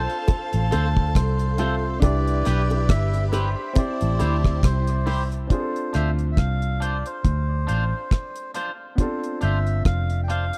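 A dry, close small-room sound in a 1970s studio style frames this smooth, bittersweet lovers rock reggae excerpt, which has a swung sixteenth-note feel. The deep drum kit, with its tight kick, hi-hat and rim click, sits up front beside a dark, round, foam-muted electric bass that is also up front in the mix. A reedy, nasal melodica with tape echo carries the tune throughout, while a clear, intimate grand piano, its action noise audible, plays accompaniment. In the opening half, a mellow saxophone section with vibrato sits in the background alongside shimmering string-machine violins treated with phaser and ensemble chorus, and high-tuned bongos with tape echo add percussion until about 5.3 seconds. A bright, twangy electric guitar enters at 0.7 seconds with spring-reverbed stabs over chords moving from Dm7 through Cmaj7 and Am7, before a G7sus4 arrives at 9.0 seconds.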